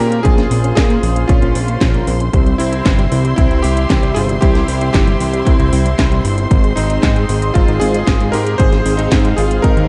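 Nostalgic and melodramatic, this short cut from a longer italo disco track moves at 115 BPM in a straight 4/4. A bright, cutting electric grand piano carries the melody from C4 to C5, its clangy, chorused unisons trailing a digital delay, while a woody, bowed string section holds sustained chords beneath it. A fat, detuned sawtooth bass sits up front, and a very quiet unison pluck traces lush arpeggios as round, chorused synth brass adds stabs from the background. A house kit of handclaps, metallic hats and a cracking snare enters at 0.1 seconds, joined at 0.2 seconds by an electronic kick drum with a punchy, tape-tinged thump, both set in a studio ambience. The chords move from Bbmadd9 to C at 2.3 seconds and Ab at 6.5 seconds, all wrapped in a dark production with light reverb.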